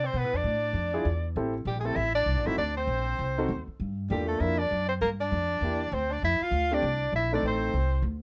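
A relaxed, playful small-group swing and bop excerpt opens with a soprano saxophone, a tenor saxophone and an upright bass sounding together at a brisk swing. The clear soprano carries the melody up front, its soft attack, scooped notes and vibrato giving it a smooth top, while the breathy tenor plays a second line beneath it with its own vibrato and scoops. The plucked bass, strung with gut, is woody and thumpy and sits prominently in the mix. A warm grand piano joins at 0.9 seconds as accompaniment, intimate and natural, with long sustain and the clatter of its action audible. The harmony moves through half-diminished, altered dominant, minor and sixth chords before settling on a diminished chord at 7.4 seconds, and a light reverb gives the room a gentle sense of space.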